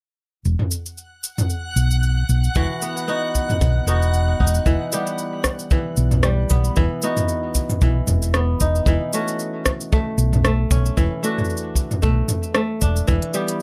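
A mix with light reverb carries this intimate, delicate folktronica piece, cut from a longer work, at 114 BPM in 4/4 with a gentle swing on the 16ths in E dorian. A round, punchy hollow-body electric bass under a filter sweep and an overdriven electronic kit with crisp hats, rim click, shaker and toms start at 0.5 seconds, and a dreamy, detuned reversed texture with its own reverb hovers above from 1.4 seconds. At 2.6 seconds a bright, ringing, fingerpicked kora joins with tape-echoed arpeggios, alongside a distant, brushed kick, as the chords move from B/E through Em, F#m7/E and D/E.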